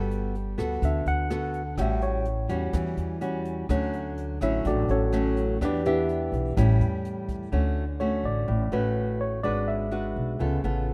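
A worn, slightly out-of-tune tine electric piano carries the melody in this short bossa nova excerpt, entering at 0.8 seconds and taking a solo through the opening stretch, its clean tone heard through built-in speakers. Beneath it, a fingerpicked nylon-string guitar with fresh strings sits small and up front, while a woody pizzicato upright bass on steel strings anchors the low end at a moderate 125 BPM in a straight 4/4. A natural-sounding jazz kit played with brushes adds hi-hat, rim clicks and a punchy kick from a studio room, sitting lower in the mix until it stops at 7.4 seconds. The harmony moves in D major through lush chords such as Gmaj9, A6 and Dmaj7, then shifts at 7.5 seconds into a second section that turns through G#m7b5 toward a tense C#7alt. The mood is romantic and sophisticated, wrapped in light reverb and small-room ambience with the rough, homely feel of a demo mix.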